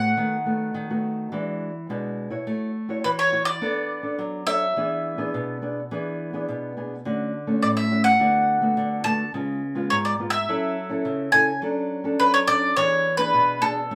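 A bowl-back mandolin picks a festive, lively melody with a ringing double-string sparkle over a small-sounding, thumb-plucked nylon-string guitar with audible finger squeak, both up front from the start in this straight 105 BPM samba fragment in 4/4, with the mandolin sitting above the guitar, moving through jazzy chords such as E9, Bm9, Dmaj7 and F#m7 in a room of moderate studio reverb.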